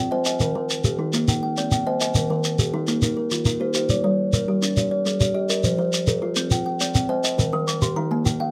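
Close, dry and lightly reverberant, this hypnotic, rippling excerpt of southern African traditional music sets two mellow kalimbas in an interlocking mbira-style cycle in 12/8, one woody solid-board instrument ringing up front and the other a short, hollow-box voice, joined by a grainy shekere, with chords moving among Eb, Cm, Gm and Fm before a kalimba fill at 7.4 seconds.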